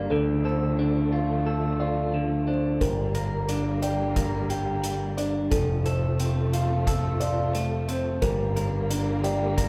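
A wet, hall-like reverb surrounds this brooding, cathartic post-rock excerpt in G minor at 89 BPM, where a growling, overdriven picked bass sits up front beneath slightly broken-up electric guitar arpeggios, muffled felt-muted upright piano arpeggios with audible action noise, and sustained bowed string chords with vibrato and portamento, while a soft-mallet drum kit with a boomy kick and hi-hat enters at 2.8 seconds over chords moving from Dm to Gm, F and back to Gm.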